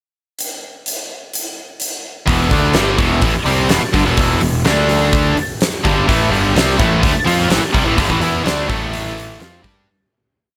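Hard rock at 126 BPM in a straight 4/4, heavy and driving, this short complete piece opens with a huge arena drum kit playing a pickup bar alone from 0.4 seconds, its fat snare and punchy kick sitting up front in a pumping hall sound. At 2.3 seconds the full band crashes in on a power-chord riff over Em, moving through D5 and a break before landing on A5. Three electric guitars carry the riff from the background: two biting overdriven guitars, one warm and one double-tracked and bright, plus a high-gain distorted guitar with a bright edge. A fuzz picked electric bass, direct and amped with overdrive, drives steady eighth notes that double the guitar riff with a punchy attack. Light reverb gives the mix some space, and the whole band fades out from 8.0 seconds to the end at 9.9 seconds.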